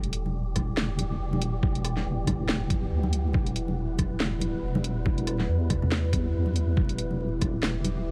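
A detuned, wobbling sub bass sits up front in this heavy, dark deep dubstep excerpt, its triangle-and-sine tone thickened by chorus and tube saturation as it holds low on an E minor chord. The tempo is 140 BPM in a half-time feel with swung 16ths, carried by a garage drum kit of handclaps, hi-hat, rim click and a cracking snare, layered and re-recorded in a small room. Congas with a thick-skinned, soft-handed sound enter at 0.3 seconds and sit in the background, followed at 0.6 seconds by a muffled, pitched-down electronic kick with a thumpy, compressed punch. Above them a moody, warbling sawtooth pad sustains slow-blooming chords with chorus, its own reverb and a vintage 12-bit sampler grit. An airy, breathy wind-like noise texture drifts quietly through its own reverb, and the whole mix stays fairly dry under a prominent layer of vinyl crackle.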